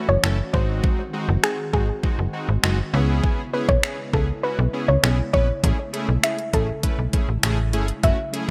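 Dance-pop at 100 BPM in a straight 4/4, this short cut from a longer piece feels driving and bittersweet, with a bright 1980s-style digital sheen and light reverb. A soft, round pluck carries the melody from G#4 to E5, its dark, gentle tone dressed in chorus and delay. Underneath, a big, fat sawtooth polysynth fills out the accompaniment with a detuned, full-bodied tone, while an airy, breathy pad with a moving notch sits mellow in the background. Both of these synth layers pump with the sidechain. So does the snappy FM bass, which enters at 0.1 s up front with a metallic attack and ranges from F#1 to C#2. An overdriven electronic pop kit joins at 0.2 s with a knocking kick, hi-hat and finger snaps, and the harmony moves through F#m7, G#7, C#m7 and Amaj7.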